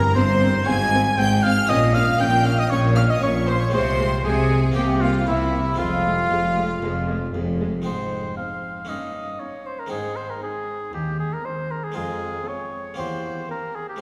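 A straight 4/4 pulse at 117 BPM drives this stormy baroque-style concerto movement, cut from a longer piece, which opens in F minor and turns to Ab major at 7.9 s. A clear, close-miked oboe with light vibrato sits up front carrying the melody, joined high above by a rich, focused chamber violin section. Beneath them, a more distant, lush studio violin section plays a second line while a smooth-topped viola section fills in the background from 0.2 s. A bright, plucked harpsichord in French style adds accompaniment, and a clear cello section and a close, rich double bass section anchor the bass, with the double basses dropping out at 7.8 s as the music moves into its major-key passage. The ensemble is heard from further back in a concert hall, wrapped in a long, wet reverb.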